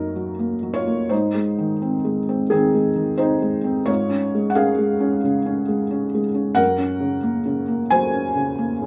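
Wistful and reflective, this short excerpt of neoclassical minimalist piano moves at 88 BPM in 4/4, though the rubato feel lets the pulse breathe freely. A single felt-muted upright piano carries the whole 8.9 seconds alone, ranging from Gb2 up to Ab5. Its tone is soft and mellow, with the hushed intimacy of the felt and audible action noise that keeps the sound natural and close, placed up front in the mix. The harmony drifts from Ebm over Gb through Ab and Db over Ab before settling on Gb at 6.6 seconds. A moderate studio reverb adds a gentle sense of room around the instrument, and the passage is clearly lifted from a longer piece.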